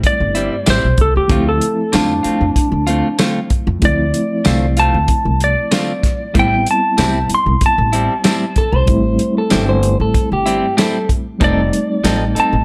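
A moderate studio reverb surrounds this brooding, mournful excerpt of straight-eighth soul blues, where a saturated, gritty drum kit with tambourine sits up front beside a woody, thumpy pizzicato upright bass. A twangy slide lap steel carries the melody through plate reverb, while a clean, picked electric guitar adds stabs with slapback echo and a reedy electric piano shimmers with fast tremolo beneath. At 8.6 seconds, a slightly broken-up electric guitar through a small old amp adds a brief second line that ends at 11.1 seconds.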